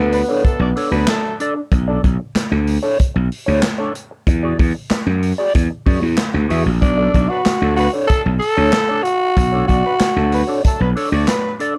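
A growling tenor saxophone, a tight horn section and an overdriven slap bass sound together at the start of this short funk cut, with the horns and saxophone dropping out almost at once. At 94 BPM in a straight 4/4 and B dorian, the mood is sly and cool, and the chords move from Bm9 to E9 and back. The slap bass is bright, punchy and up front, while a swinging big-band drum kit of handclaps, hi-hat, kick and a medium-tuned snare sits in a natural studio room. A clean, mellow electric guitar played with the fingers adds wah-coloured accompaniment throughout. The raspy saxophone returns at 6.8 seconds to carry the melody with a light vibrato, and the smooth horn section, doubled in octaves, follows at 7.1 seconds as a second line. Light reverb and a dark, warm production round out the sound.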